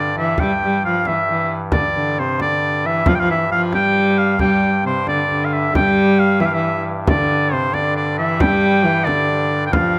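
A driving, mysterious medieval dance moves at 90 BPM in a straight 6/8, a short passage cut from a longer piece in which a single section is stated twice, the repeat arriving at 5.7 seconds. A bright shawm carries the melody in a folk style, its tone smooth at the top and placed up front as a solo voice between C5 and G5. Beneath it a single bowed, fretted viola da gamba plays a second line from C3 to G3 with a rich, pure, ringing tone, a soft attack and light vibrato, also sitting up front. A chamber organ holds a G2 drone on a soft reed oboe stop with audible chiff and tremulant, while a deep, large frame drum struck with hard hands sounds close and dry from 0.2 to 9.9 seconds. Moderate plate reverb surrounds the players in a rough home demo mix.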